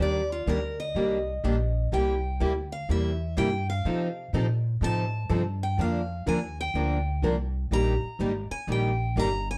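A steel-string acoustic guitar plays a bright, boxy solo melody, finger squeaks audible, over a charming, swinging jazz manouche groove at 124 BPM in Eb major. A plugged-in steel-string guitar sits up front in the accompaniment while a bright archtop guitar picks in the background, and a woody, thumpy upright bass on gut strings anchors the low end. The chords move from Ebmaj7 through C7, F7 and Bb back to Eb under light reverb and a dark, warm production, in a short piece cut from a longer performance.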